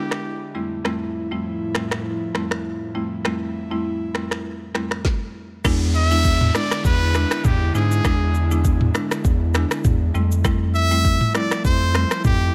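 Dry and close, this smooth, hypnotic afrobeats excerpt rides on a buzzing, woody marimba struck with hard mallets, an airy, breathy pad with chorus and sidechain pumping, and a produced afro-pop kit with a deep kick, woody snare, rim clicks, snaps, shaker, toms and crash. After a brief trumpet phrase at the start, a round analog bass enters up front at 5.6 seconds with a faint electronic downlifter. At 6.0 seconds the bright solo trumpet returns with light vibrato, scooped notes and tape echo, carrying a pop-style melody over the swinging groove as the chords move between E7 and Fmaj7.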